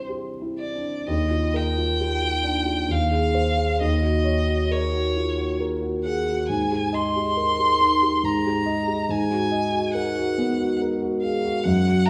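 A focused, clear violin sings a bowed melody with vibrato over a worn, long-sustaining grand piano, both present from the opening to the cut at 12.1 seconds in this dreamy, luminous impressionist classical duo. The music sways in three with a flexible rubato feel, drifting through lush ninth and major-seventh harmonies. Both players sit up front, wrapped in the wet reverb of a recital hall, in a short fragment taken from a longer piece.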